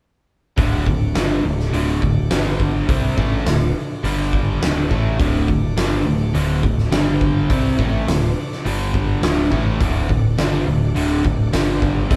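A confident, sunny classic rock passage at 104 BPM in D mixolydian kicks in at 0.6 seconds with a huge arena drum kit up front, its fat snare, punchy kick and hi-hat ringing in a natural big room, under a cranked stack guitar riff that sits bright, overdriven and forward. Beneath it, a growling picked bass adds punchy, overdriven low end, while an overdriven semi-hollow guitar plays a riff in the background with a warm, hollow-body tone, and a very quiet tonewheel organ holds full, shouting chords through a slow rotary speaker with audible key click. The band plays live in a stone room with moderate reverb, moving between D and G5 until the cut at 12.2 seconds.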